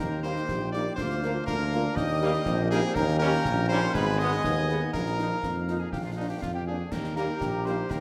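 A rousing, festive military-style march for wind band in Eb major at 121 BPM in 2/4, this excerpt features a clear solo cornet with a smooth top carrying the melody over a mellow, up-front tuba bass, while a hollow, airy small flute group, a distant euphonium and a woodwind section with light vibrato add second lines, a very quiet dark French horn section accompanies, a roomy trombone section holds sustained chords, and snare drum, bass drum and dark clash cymbals sit in the background of a wet scoring stage reverb, the harmony moving through an Abm and a Bbsus4 before settling back on Eb.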